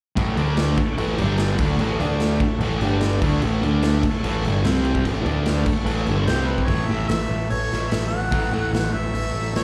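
Garage rock at 147 BPM in A major, rowdy and swaggering, caught live through a club PA with light reverb, where a double-tracked fuzz guitar riff and an overdriven, punchy picked bass sit up front with a saturated, gritty drum kit pumping in a bright stone room, a reedy vintage combo organ holds clean chords in the background, and a clear jazz-style harmonica with vibrato and scooped notes takes the solo melody from 6.3 seconds as the guitar drops out at 8.7 seconds.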